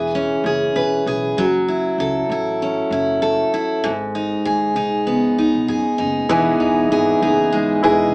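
This heartfelt, sunny acoustic pop excerpt opens with a bright jumbo steel-string guitar, picked up front with fresh strings and audible finger squeak, while a woody pizzicato upright bass sits in the background beneath it. The lightly swung groove moves through C#m7/E, F#m7 and G#m7 before settling on Emaj7 at 6.3 seconds. At that point an intimate upright piano joins in the background, its long sustain and audible action noise adding a warm, polished glow. At the same moment, a full-bodied fingerpicked dreadnought guitar adds arpeggios in the background. All four parts carry through to the cut at 8.1 seconds. The whole mix is bathed in wet studio reverb and sounds as if heard from further back in the room through a small speaker.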